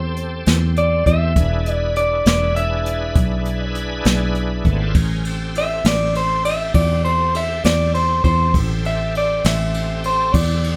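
Smoky and soulful, this slow blues in A minor moves at 67 BPM in a straight 12/8 feel, cut from a longer piece as a clean electric guitar solo through a small old amp sings a slightly broken-up, lo-fi line with slapback echo over Am7 and E7 changes. Beneath it, a bright tonewheel organ holds shouting, lightly overdriven chords with chorus vibrato and a slow rotary speaker, set further back, while a fingered electric bass sits up front with a dark, round, foam-muted tone. A jazz brush drum kit joins at 0.2 seconds with dark cymbals, a medium-tuned snare and a boomy kick, all wrapped in light reverb.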